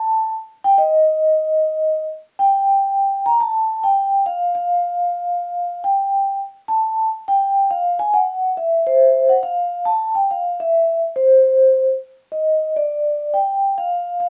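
A lone vibraphone played with soft mallets opens this swinging, playful jazz excerpt at 139 BPM in 4/4 with a swung eighth-note feel. Its mellow, ringing tone carries a medium motor vibrato and sits up front, spanning C5 to Bb5, heard through close, detailed microphones with light reverb and tuned to A4 = 442 Hz. The phrase moves into a new section that settles in F major at 9.4 seconds before the clip ends at 14.3 seconds.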